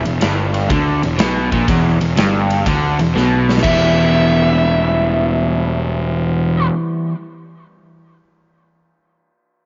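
A brooding, smoky blues rock excerpt with a southern rock swing opens on a crunchy, double-tracked overdriven guitar riff up front, a fuzzy picked electric bass beneath it, and a dark, smooth lead guitar sitting on E5. A big acoustic drum kit with punchy kick, medium-tuned snare and bright crash and ride cymbals enters at 0.1 s, plays a fill at 3.1 s leading into the second section, and stops at 3.8 s. The guitars and bass carry on in a moderate plate reverb with a dulled top end.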